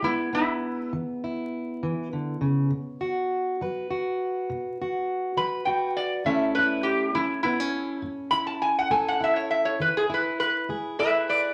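A 12/8 pulse at 68 beats per minute in dotted quarters gives this acoustic country blues a laid-back, gritty feel, with the eighth notes played straight. A fingerpicked, plugged-in jumbo steel-string acoustic guitar carries the accompaniment from start to finish, its full-bodied tone sitting in the range from A2 to B4. Over it, a metal-body resonator guitar played with a slide and fingerpicks takes the melody between E4 and B5, its metallic, nasal voice tempered by a mellow edge and placed up front alongside the rhythm part. The harmony in E mixolydian moves from E to B5 at 2.7 seconds, to A at 6.3 seconds, and back to E at 9.8 seconds. A wet studio reverb and a layer of vinyl crackle lend the sound a worn, roomy character across this 11.5-second passage, which is cut from a longer piece.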